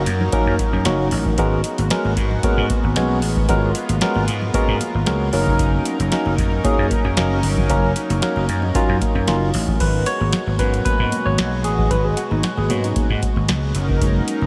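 Early-eighties boogie funk at 114 BPM in a straight 4/4, this danceable, slick excerpt sits in G# dorian, moving between F#6 and G#m11 chords. A booming analog drum machine sits up front and dry, with a deep kick, tonal snare, metallic hi-hats and crash cymbal carrying a tape-warm character, while a growly, punchy vintage slap bass holds down the low end. Very quiet, high-tuned congas add a ringing touch from a small room, played with soft hands. A barky, clean tine electric piano with subtle chorus comps up front through a combo amp, then takes a solo from 9.8 seconds to the end. Behind it all, a shimmering pulse-width pad with a soft attack and long release sustains bright, retro chords, and a huge ambient reverb soaks the mix in a dreamy haze.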